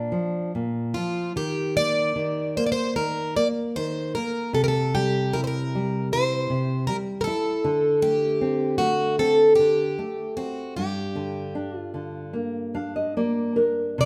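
A wet stone room rings around two guitars played live together, both close and up front in this mournful fado fragment. At 76 BPM in G minor, over an uneven, rubato 4/4 pulse, a picked, plugged-in twelve-string dreadnought carries the longing melody between D4 and D5, its octave-doubled strings shimmering with a touch of finger squeak, while a fingerpicked nylon-string guitar with fresh strings gives deep classical accompaniment from G2 to F5. The chords move from Bb through Eb5, C and D5 to Gm, and the nylon-string guitar adds a fill from 12.3 to 14.0 seconds.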